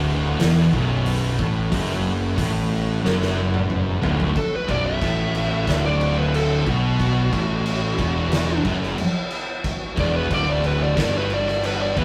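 Hypnotic and sludgy, this stoner and doom metal excerpt moves at 91 BPM in a straight 4/4 in B minor. A stack of picked riffing guitars fills the low end: a bright, double-tracked high-gain guitar in the background, one dark fuzz guitar kept very quiet, and a warm fuzz guitar also set in the background. Beneath them, a growly, punchy fingered bass adds overdriven fuzz. An oversized low-tuned drum kit enters at 0.4 seconds with a boomy kick, fat snare and shadowy cymbals in a pumping stone room, and a drum fill from 3.0 seconds leads into a picked, distorted fuzz lead guitar solo at 4.4 seconds. Underneath, a very quiet tonewheel organ holds full, sustained chords through a slow rotary speaker, with chorus vibrato, key click and light overdrive, while the harmony rests on Bm before moving to E5 near the end. The rough rehearsal-room sound carries saturation and moderate reverb.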